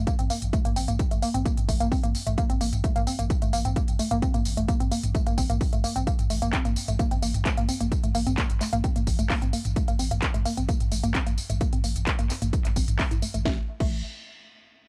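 A straight 4/4 pulse at 130 BPM drives this hypnotic, industrial peak-time techno excerpt in A phrygian, built on a heavy, overdriven electronic kick and a layered, up-front drum kit of cracking snare, smooth hi-hats, handclaps, tambourine, toms and crash cymbal. Beneath it a deep, thick sub bass pumps with sidechain and overdrive, while a woody, wave-folded pluck plays a short-decay riff between A3 and E4, warbling through chorus, tube saturation and tape echo under a filter sweep that runs until 13.5 seconds. The mix is dry and gritty, with little reverb and a hardware edge.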